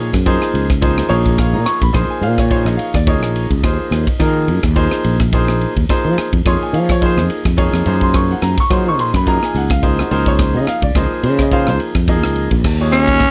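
Driving and intense, this electric jazz fusion excerpt moves at 107 BPM in Eb dorian with a light 16th-note swing, as a bright baby grand piano comps through lush extended chords while a growly fretless bass sustains beneath and a crisp, airy drum kit with a punchy kick works the hi-hat, ride, rim clicks and crash. A raspy, breathy tenor saxophone slips in only at 12.9 seconds for a single gritty note, sitting up front as the passage cuts off. The sound is polished and close, with light reverb and a soft-edged top end.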